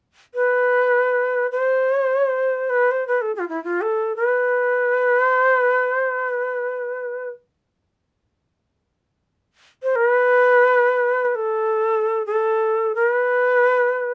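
The recording places the listener further back in a small booth whose short, moderate ambience gives the tone an intimate frame. A single shakuhachi carries this brief passage from Japanese traditional chamber music, entering at 0.3 seconds and sounding until the cut at 14.1 seconds. Its end-blown bamboo voice is bright and reedy, with an airy breath around each note, a chiff at the onsets of tongued notes, and vibrato. The line moves in free time within the span from E4 to C5, sitting up front in the sound. The mood is meditative and still, a solitary voice suspended in the quiet of the room.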